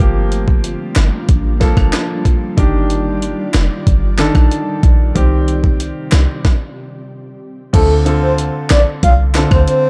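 Hypnotic and bouncy, this dancehall excerpt at 93 BPM in D phrygian rides a gritty, thumpy sampler-style jungle kit of kick, medium-tuned snare, rim click, handclaps, hi-hat and crash, up front with a punchy, tight 808-style bass, while a clear, polished baby grand piano comps over Gm7, Ebmaj7 and Cm; an ethereal, airy pad with tremolo and sidechain pumping drops out at 6.4 seconds, a breathy, flute-like synth lead with vibrato enters over Dm7 at 7.7 seconds, and faint high-tuned bongos appear at 8.1 seconds, all in a dark, dry mix.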